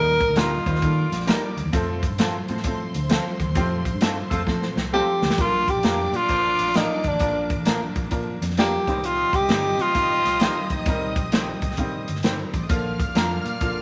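Swung eighths at 131 BPM drive this uplifting 1960s-style soul excerpt in Bb major, where a breathy, subtoned tenor saxophone with scooped notes carries the melody up front, briefly at the opening and again from 4.9 seconds, over a punchy big-band drum kit, a dark foam-muted electric bass, a woody, slightly detuned upright piano, lo-fi guitar stabs through a small old amp, a lush bowed violin section and, from 3.5 seconds, a distant horn section, with a band accent and drum fill leading into the second section at 5.4 seconds.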